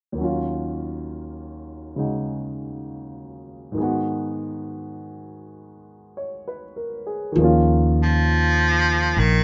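A warm, natural grand piano opens this wistful, smoky swung jazz ballad alone in a small, slightly roomy space with a rough home-demo sound, before a woody pizzicato upright bass joins at 7.4 seconds and a bright, punchy baritone saxophone with light vibrato takes up the melody at 8.0 seconds.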